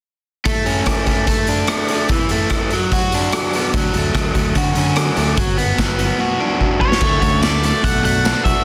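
An upbeat yet wistful indie rock excerpt opens with a picked, overdriven guitar riff up front over a gritty, saturated garage drum kit with a boomy kick and tambourine in a bright stone room, a fingered electric bass joins at 3.7 seconds as the chords move through Dmaj7 and Gmaj7, and during a drum fill a dark octave-fuzz lead guitar enters at 6.8 seconds, followed at 7.0 seconds by a clean, chorused guitar riff in the background, all within a dense, heavily limited mix.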